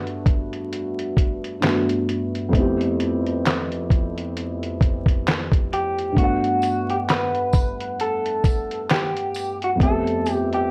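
A felt-muted upright piano, dark and boxy with audible action noise, carries the chords of this mellow, dreamy lo-fi hip hop excerpt in G major at 66 BPM, moving between Gmaj9 and Fmaj9#11 over a compressed, pitched-down sampler-style drum kit with a thumpy kick, handclaps, hi-hat and snare that swings lightly on the 16ths. At 5.7 seconds an electric guitar through a small old amp enters with a slightly broken-up, picked melody, and a jingly tambourine joins faintly at 6.6 seconds. The recording sits in moderate reverb and is coloured by worn cassette tape, vinyl crackle and warbly pitch drift.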